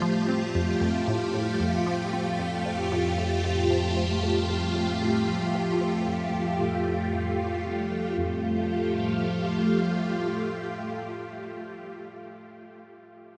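Cosmic and luminous, this ambient, sequencer-driven space music excerpt moves at 114 BPM in a straight 4/4, opening on an Fadd9 chord in F major. Up front, a lush, vintage string machine holds sustained full-ensemble chords from its soft-attack sawtooth tone with a sub octave and a moving notch, colored by phaser and ensemble chorus. Deeper in the background, a juicy, squelchy blip pluck with a resonant filter, detuned sawtooth and triangle tones and ring modulation plays a fast-attack, short-decay riff through phaser and delay, and a fade-out on this arpeggio sound runs from 0.0 to 8.2 seconds. An analog drone enters at 1.2 seconds on a low F, an evolving bass of sawtooth and pulse waves with pulse-width modulation, slow attack and long release, thickened by chorus, phaser and tube saturation. The whole passage sits in a wet, huge ambient reverb with a long tail, shifting into a second section at 8.2 seconds before the clip is cut from the longer piece.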